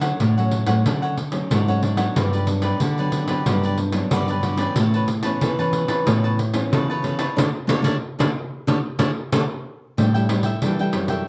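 Festive and sunny, this short cut from a longer samba and choro piece moves in a straight four-beat feel with a dark, warm production and light reverb. A crisp, bright picked cavaquinho sits high in the accompaniment, while a fingerpicked nylon-string guitar in classical style fills the middle with warm chords. A second nylon-string guitar, small in tone and thumb-plucked with audible finger squeak, carries the bass line. The jingly pandeiro is played with hard hands and sounds both up front and set in a large room. The harmony moves from Dmaj7 through Gmaj7 and Aadd9 to D5, where the whole band hits accents from 7.4 to 10.0 seconds before the music turns to a new section on A7sus4.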